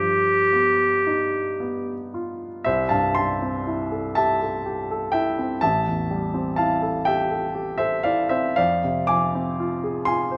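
A rubato lilt in 6/8 carries this dreamy, pastoral impressionist fragment for duo, where a clear, smooth-topped clarinet sings a brief up-front melody around G4 until 2.1 s while a warm, polished grand piano spans A1 to D6 in accompaniment through 10.4 s, drifting over chords such as Gaug7, C6, Am7 and Fm6, all captured by close, detailed microphones in a recital hall with moderate reverb.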